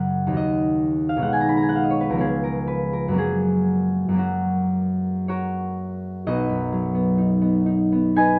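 Serene and peaceful, this short classical fragment for solo concert harp drifts in a gently rubato triple metre, cut from a longer piece. The harp sounds mellow and ringing, thumb-plucked and up front across a range from B1 to B5, with moderate studio reverb around it. Its harmony moves from D#m through G#m/B and C#7 to rest on F# at 3.2 seconds, then shifts to a B chord as a new section opens at 6.3 seconds.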